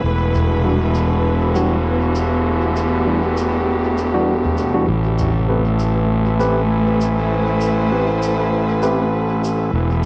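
Light reverb and small-room ambience frame this home cassette recording of a deep, hazy ambient dub passage at 99 BPM in 4/4, where an overdriven, round fuzz bass sits up front beneath smooth, bowed string chords with vibrato and cassette-tape coloring, an airy, wind-like noise texture drifts very quietly, low-pass-filtered toms and shaker enter at 0.3 seconds, and a barky tine electric piano adds bright stabs from 0.6 seconds over Em9 moving to Am9.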